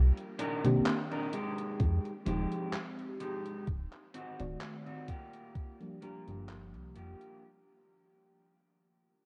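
A glossy, chorused synth bass opens this nostalgic, melancholic vaporwave fragment, its pulse-wave and sawtooth tone evolving under a filter sweep as a gated 80s digital drum machine enters with handclaps and hi-hat soaked in gated reverb. A dark, slightly broken-up picked electric guitar riff, blurred by lush chorus, low-pass filtering and tape echo, joins just after, followed by a dreamy, warbling FM electric piano with a soft pad layer that carries the Cm9, Fm9, D7b9 and Gm7 changes through analog chorus and tape echo. A thumpy, up-front electronic kick drum plays from 1.8 to 5.8 seconds, while the piece fades out throughout under a cassette-tape sheen of light reverb and digital ambience.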